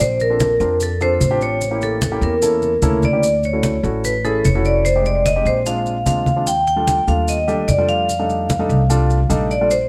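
A ringing vibraphone, played with medium hard mallets and touched with tape echo and a medium motor vibrato, carries the melody up front in this lively, sunny Afro-Cuban jazz excerpt at 148 BPM in Bb major, over woody pizzicato upright bass, low-tuned congas struck with hard hands and grainy, dry maracas. From 0.3 seconds an intimate concert grand piano with audible action noise fills in the accompaniment. The harmony moves through rich chords such as Bbmaj9, A7b9, Dmaj7 and Ebmaj9#11 before landing on F13, all in a moderate studio reverb.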